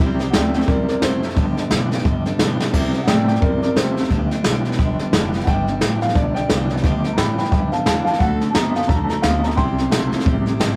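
Swung at 175 BPM in 4/4, this upbeat, retro rockabilly clip in G mixolydian puts brushed drums up front with a boomy kick and a fill at 2.6 seconds, while a thumpy pizzicato upright bass holds down the bass line and a full-bodied picked acoustic guitar sits in the background beneath a twangy, slightly broken-up electric guitar riff with tremolo, and a dark, mellow upright piano with audible action noise carries the melody as a solo, captured as a rough rehearsal-room recording with light reverb.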